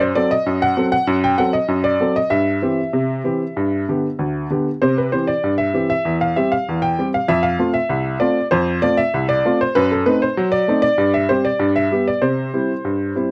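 A bright upright piano plays alone from the first moment, opening a lively, cheerful ragtime fragment in C major at 97 BPM, set in a straight 2/4. The instrument sounds worn and slightly detuned, with a woody tone, long sustain and audible action noise that gives it an intimate character, and it is tuned to A4 = 442 Hz. Its range stretches from C2 up to G5. The harmony moves from F#dim through C/G and G to C, then C/E and F, before an F#dim7 leads through C5/G and G to land on C at 12.2 seconds. The dry, close 1970s-style studio sound keeps the piano up front and present for the full 13.3 seconds of this section cut from a longer piece.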